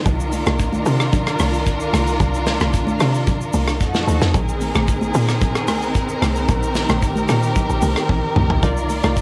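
A straight 4/4 amapiano groove at 112 BPM in C minor is driven by an acoustic drum kit with a tight kick and rim clicks up front, plus bright, damped congas in the background and a drum fill at 8.1 seconds. A woody, punchy log drum bass sits under lush bowed strings with vibrato and portamento, which carry sidechain pumping and cassette tape colour through the chords Cm11, F7b9 and Bb9sus4. A hollow, bouncy square-wave pluck with chorus and analog delay stabs in at 8.6 seconds, closing this late-night, hypnotic excerpt of a longer piece with a home-cassette, reverb-tinged sound.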